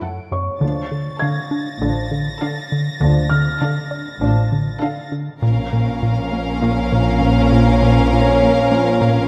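A punchy, plucky analog bass riff with a filtered, ring-modulated sawtooth edge drives this uneasy, mysterious suspense cue at 100 BPM in 4/4, cut from a longer piece. Sul tasto string sections carry it: a soft-attack violin melody, a clear second violin line, and dark, intimate violas. From 0.6 s a mellow, distant French horn section holds chords while rich double basses and background cellos carry the low end, as a high violin texture and a felt-muted upright piano with audible action noise drop out at about 5.1 s and 5.4 s, the harmony moving from F#m7 through Dm to A#m in a wet scoring stage reverb.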